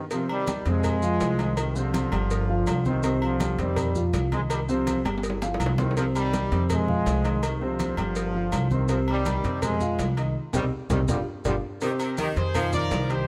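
A lightly reverberant, passionate and danceable salsa excerpt in C minor at 164 BPM: a bright trombone section carries the melody up front over a dark, woody upright piano and a thumpy, pizzicato gut-string upright bass, backed by low-tuned congas, tight high-tuned cowbell and bongos, ringing agogo bells and timbales and grainy maracas, with a drum fill at 5.1 seconds and another fill with a band accent from 10.4 seconds before a clear, punchy trumpet section and an edgy saxophone section enter at 11.8 seconds.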